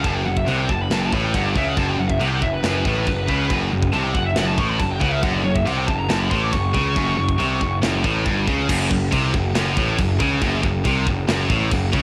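A dry home recording carries this relentless, aggressive heavy metal excerpt at 139 BPM in F# phrygian over a lone F#m chord, where a dark, cassette-tinged lead guitar with analog delay solos high until 7.8 s above two low distorted rhythm guitars, one heavy and bright, the other scooped and sitting in the background, while a growly, overdriven fuzz bass sits up front and a tight, polished, airy, tape-coloured drum kit with bright china and crash cymbals, a medium-tuned snare and a tight kick drives a straight 4/4 throughout.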